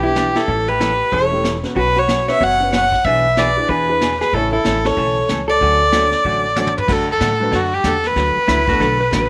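Down-home and cheerful, this western swing excerpt moves at a brisk 187 BPM in D major with a swung eighth-note feel, led up front by a rich, nasal bowed fiddle with light vibrato. Two clean, picked hollow-body jazz guitars fill in beneath it, one carrying a second line that stops at 6.7 seconds and one providing accompaniment, while a mellow, vintage upright piano sits in the background and a woody, thumpy pizzicato upright bass anchors the low end. A brush drum kit with dark cymbals and a punchy kick plays a fill just before the section repeats at 6.9 seconds, and a slide lap steel with volume swells enters in the background at 8.5 seconds, all in a light reverb.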